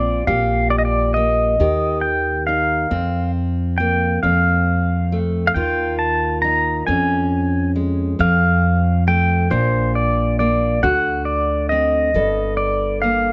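A twangy pedal steel guitar carries the melody up front, its clean, compressed tone shaped by fingerpicks, slide and volume swells and set in a plate reverb. This short acoustic folk passage for a small band has a hopeful, pastoral mood, moving slowly in 6/8 at 46 BPM counted in dotted quarters with a straight feel. Beneath the steel, a dark, full-bodied dreadnought acoustic guitar fingerpicks the accompaniment, also up front, while a woody pizzicato upright bass holds the low end. All three parts play together from the start to the cut at 13.3 seconds, in a moderate studio room. The harmony travels from Gm/Bb through Eb, Fsus4 and F to Ebsus2 and a darker Db/F, then brightens through F and Bb before a D7 pulls toward a closing Gmadd9.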